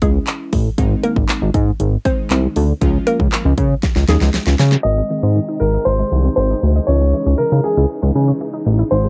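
A straight 4/4 dance-pop groove drives this summery, euphoric excerpt. A punchy, layered electronic kit of kick, fat snare, bright hats and handclaps sits up front and ends with a fill from 3.8 seconds, while a glossy, retro chorused synth bass and mellow, glassy digital keys pump with sidechain underneath throughout. A hollow, bouncy square-wave pluck carries the opening melody through chorus and analog delay; at 4.8 seconds an intimate concert grand piano with audible action noise takes over the tune, joined in the background by huge, lush supersaw chords with phaser and woody, round mallet-like FM pluck arpeggios, all wrapped in a lo-fi home-cassette sound softened by a low-pass filter and light reverb.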